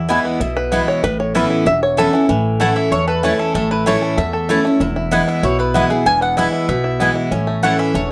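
Bluegrass in A major at a brisk 191 BPM, this rustic, joyful fragment opens with a twangy, percussive fingerpicked banjo solo carrying the melody. Beneath it sit a bright, full-bodied dreadnought guitar placed up front with audible finger squeak, and a thumpy, woody pizzicato upright bass on gut strings. A double-strung mandolin adds stabs throughout, and at 2.6 s, shortly after the tune moves into its next section, a second, round-toned mandolin takes up a melody, all in moderate studio reverb.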